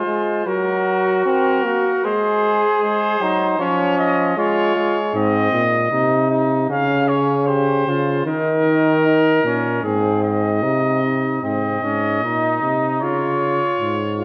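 A clear trumpet carries the melody of this solemn, contemplative classical canzona for brass ensemble, sounding distant and roomy yet placed up front in a straight 4/4. Beside it, a flugelhorn with light vibrato sings a second line, and both horns play from start to finish. A trombone supplies the accompaniment until 5.1 seconds, when a warm bass trombone takes over the low foundation with a soft attack, its own gentle vibrato, and a level a touch louder than the other parts. The harmony moves through Gb, Ab and Db chords, and a new section begins at 11.4 seconds. The recording sits in a moderate scoring-stage reverb and carries the worn, warbling pitch drift of old cassette tape, and it is cut from a longer work.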